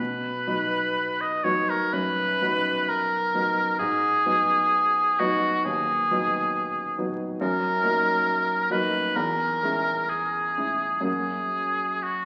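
This is a romantic classical duo for oboe and baby grand piano, lyrical and warm in mood, moving at an unhurried 61-71 BPM in 4/4 with a rubato feel in B major, tuned to A4 = 441 Hz. The oboe carries the melody up front from start to finish, its clear tone shaped by a light vibrato, a soft attack and a classical style as it sings between F#4 and D#5. Beneath it the piano accompanies from D#2 to F#4, dark, mellow and intimate, with natural, short-sustaining notes and audible action noise, set well behind the solo line. The harmony moves from B to G#m7 at 3.8 seconds, then through D#m/F# and C#m/E before settling on F# at 11.1 seconds. The duo sits in a recital hall reverb with a 1.4-second decay, heard through the crackle of a very old 78 rpm record, and the 12.2-second passage is cut from a longer piece.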